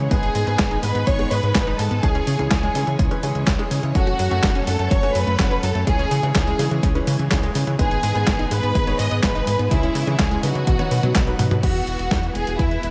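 Playful and sunny, this excerpt of straight 4/4 italo disco at 125 BPM sets a rich, vibrato-laden studio violin section melody with tape echo over a punchy, layered electronic kick, a clean 12-bit drum machine with handclaps, hi-hat, snare, toms and crash re-recorded in a large room, a round, deep analog bass, and background layers of lush chorused string-machine chords, detuned, warbling unison pluck arpeggios with tape echo and intimate grand piano stabs with audible action noise, all moving through G#m, C#m and F#m before a drum fill at 10.7 seconds and a B chord lead into an Eadd9 lift at 11.6 seconds, where the pluck and piano stop.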